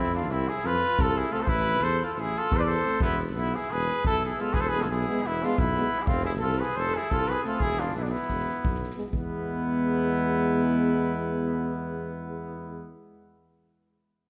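Balkan folk for a brass band, this fiery, virtuosic excerpt from a longer piece races along at 353 eighth-note beats per minute in a straight 9/8, set in E phrygian dominant. A mellow cornet carries the melody up front, with a punchy trumpet playing a second line beneath it, while a smooth-topped tuba holds down the bass with light vibrato. A soft-mallet drum kit with a fat snare and boomy kick drives the opening, then drops out at 9.3 seconds. A French horn and a euphonium join at 1.3 seconds as accompaniment, sitting in the background, each with light vibrato. The harmony moves through F, Am and E, returning to F before settling on E as a new section begins at 9.1 seconds, and the whole band is heard in a church or concert hall whose moderate reverb gives the cornet, trumpet and euphonium a distant, roomy quality.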